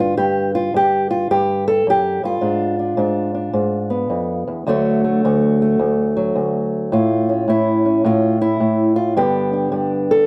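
Acoustic country blues with a gritty, swaggering mood, set at 107 BPM in 4/4 with a swung eighth-note feel. A single fingerpicked old ladder-braced acoustic guitar carries the whole piece up front, its dark, woody, boxy tone shaped by old strings as it moves through G, G#dim7, D and A before returning to G at 9.2 seconds. A moderate studio reverb gives the solo guitar some room in this short cut from a longer piece.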